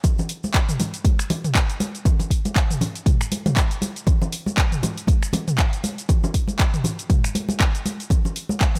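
A swung sixteenth-note groove in 4/4 drives this earthy, warm house passage, cut from a longer piece and running about 8.8 seconds. An overdriven, punchy electronic kick sits up front alongside a layered house drum kit of finger snaps, handclaps, shaker, toms and bright hi-hats, while damped, medium-tuned congas with a thin, bright skin add acoustic colour from a small room. The whole production is set in a digital ambience.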